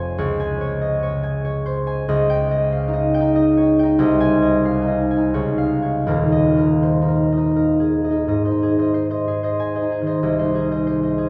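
A rubato 3/4 pulse drifts between 79 and 97 BPM in this dreamy, serene classical piece for solo concert harp in Ab major, a short fragment of a longer work. The acoustic harp sits up front, its thumb-plucked strings ringing from Eb1 up to Ab5 through a Dbmaj9 opening and an Eb7/Db, then settling onto Ab at 8.3 seconds for a brief new section. A wet cathedral reverb with a 4.8-second decay surrounds the harp's warm tone.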